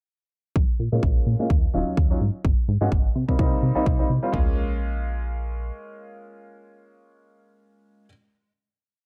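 A dry, close-up sound frames this short, complete filtered disco house piece, nostalgic and sensual in mood, built as a breakdown with a filter sweep that gives way to a final chord at 4.3 seconds. A punchy, layered electronic kit lays down a four-on-the-floor kick with floor tom, and the drums drop out at 4.5 seconds. Beneath them, a dark, funky analog bass with a sawtooth pluck jumps between octaves under sidechain pumping and a low-pass filter, while a brilliant baby grand piano with audible action noise plays a close-voiced rhythmic chord riff through phaser, pumping and low-pass filtering, carrying on to the end after the bass stops.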